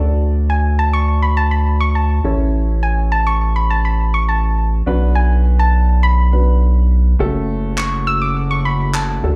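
Driving and energetic, this dance-pop fragment is cut from a longer piece and moves through D, A, Bm and F#m over a straight four-four pulse. A soft, round pluck carries the melody up high, its gentle, dark tone shaped by a filter sweep and thickened with chorus, digital delay and slapback echo. Beneath it, a natural-sounding baby grand piano plays the accompaniment with its own slapback echo, while a deep analog bass sits up front as the loudest part. At 7.2 seconds an airy, breathy pad with chorus enters on sustained chords, and layered electronic handclaps, tape-warm and re-recorded in a large room, join at 7.8 seconds. The whole mix sounds like a live gig heard through the venue's PA, with a light touch of club reverb.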